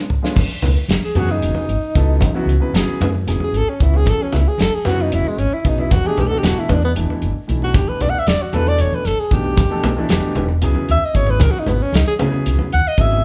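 Electric jazz fusion in a straight 7/8, nocturnal and funky, caught from a longer piece with the band playing live in one room under light reverb. A brief drum fill on a damped 70s kit, dry with dark cymbals and a tight kick, opens the cut before an up-front alto saxophone solo takes over from 0.4 seconds, its tone clear and close-miked with vibrato and a soft attack. Beneath it, a growly, round fretless bass and a concert grand piano with deep bass comp through F#7sus2, Em7 and C#m7, while ringing congas sit in the background.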